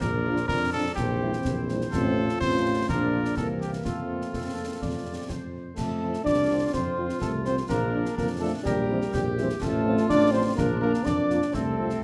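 A cornet with light vibrato leads a spirited, proud military-style wind band march in F major at 125 BPM in 2/4, over a tight woodwind second line, very quiet dark trombone chords, a soft-attacked mellow tuba bass and close, dry snare, bass drum and dark-toned clash cymbals, with a background French horn section joining at 0.3 s and a mellow euphonium and hollow, wooden piccolo adding second lines from 5.8 s, all set in a large studio reverb.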